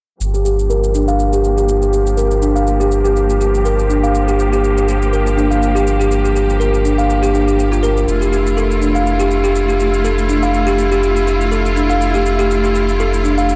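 A dry, gritty hardware recording in a small room opens this hypnotic afro house fragment, cut from a longer piece and sitting at 122 BPM in 4/4 with a light 16th-note swing in G dorian, tuned to A4 = 443 Hz. Up front, a woody, hollow-box kalimba rings out thumb-plucked arpeggios from 0.3 seconds, its tone shaped by a low-pass filter sweep and trailing tape echo. Beneath it, a deep, round sine sub bass holds sustained low notes with a fast attack, warmed by tube saturation. A distant, lush symphonic string section bows sustained chords with vibrato, kept clear and focused while its own low-pass filter sweeps across the whole passage. A produced, electronic cabasa ticks quietly behind, as the harmony moves from Gm7 to Fmaj7 at 8.1 seconds, before the kalimba stops at 13.4 seconds and the other parts end at 13.6 seconds.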